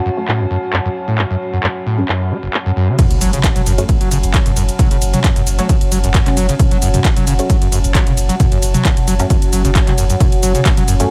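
A dry, punchy analog kick sits up front and lands at 3.0 seconds, opening the drop of this dark, driving peak-time techno excerpt at 133 BPM in F# minor. Beneath it, a deep, thick saturated sub bass holds F#1 through overdrive, a low-pass filter and sidechain pumping. Before that, a squelchy, resonant acid bass riff runs through distortion, subtle chorus and delay, and a layered, overdriven drum kit brings smooth filtered hats, handclaps, ride, shaker and toms in a small room. Further back, a muted, nasal dub chord stab on F# minor plucks short through phaser and delay. Around them, a metallic, inharmonic FM drone and a nostalgic, lo-fi tape-like pad warble with chorus and built-in reverb, pumping against the kick, while a very quiet electronic impact marks the drop.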